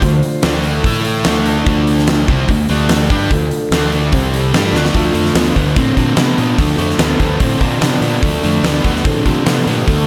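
A big arena sound wrapped in a lush hall reverb frames this brooding, gritty blues rock power trio cut with a southern rock edge, a short section lifted from a longer piece. Up front, a bright, double-tracked fuzz guitar drives a distorted picked riff over a punchy kick and fat snare from a huge acoustic drum kit, while a growly overdriven fingered bass sits beneath and a soft, flute-like tonewheel organ with key click holds sustained chords through a slow rotary speaker in the background. A drum fill at 4.7 seconds marks the turn into the second section as the harmony circles D minor.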